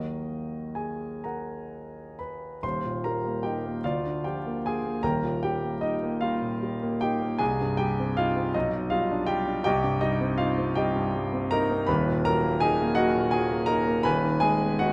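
A concert grand piano carries this brief romantic character piece alone, its intimate, polished tone sitting up front with deep bass, long sustain and audible action noise. The mood is passionate and brooding, moving in a rubato 6/8 at roughly 41-56 BPM counted in dotted quarters. Cut from a longer piece, the passage opens on an E-flat minor chord before turning to E-flat major at 2.6 seconds, then drifts through C minor harmony before settling back into E-flat minor at 11.9 seconds. The piano spans from Eb1 to C6, and its low register lends the sound real weight. A wet recital hall reverb surrounds the instrument, giving the close, present sound a sense of space.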